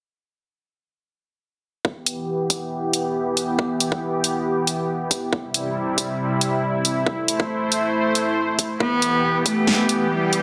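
Heavy, menacing wobble dubstep in a half-time feel, cut from a longer piece. A lush, detuned supersaw pad with a sub octave holds sustained chords through Em, C and Am, pumping from sidechain compression under a filter sweep. A punchy, tape-tinged electronic kick and a dubstep kit with a huge snare and hi-hat sit up front in a wet digital room. At 8.8 seconds a rich, floating bowed cello enters, playing a soft-attacked, distant sul tasto line through a digital delay.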